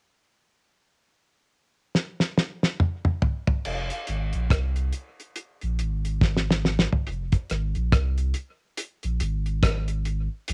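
Recorded at home on cassette with a touch of light reverb, this heavy, spacious dub reggae passage, cut from a longer piece, moves at 70 BPM in F minor with a swung sixteenth-note feel. A damped 70s acoustic drum kit sits up front with a dry, mid-forward, tape-tinged sound, dark cymbals, a fat snare and a tight kick, plus hi-hat, rim clicks and toms. It enters with a fill at 1.9 s, and a deep, round, sine-like sub bass joins at 3.7 s, holding sustained notes low in the mix's foreground before another drum fill arrives at 6.2 s.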